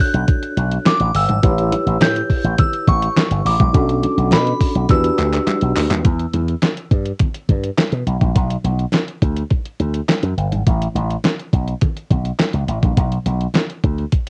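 A glassy FM synth bell melody and a mellow tine electric piano open this danceable early-eighties boogie funk cut at 104 BPM in E dorian, riding over a clean 12-bit drum machine with a thumpy kick, fat snare, hi-hat and handclaps, while a punchy, bright slap bass through an envelope filter joins at 0.1 seconds and stays up front with the drums. Very quiet, damped congas slip in at 0.3 seconds; the chorused bell's warbling tone decays with a long release before it drops out around 5.7 seconds, and the piano follows at 6.0 seconds after a drum fill. The second half leaves the drum machine, bass and congas to carry the groove through a break with the chords stopping, all with little reverb and the dusty character of a home cassette recording.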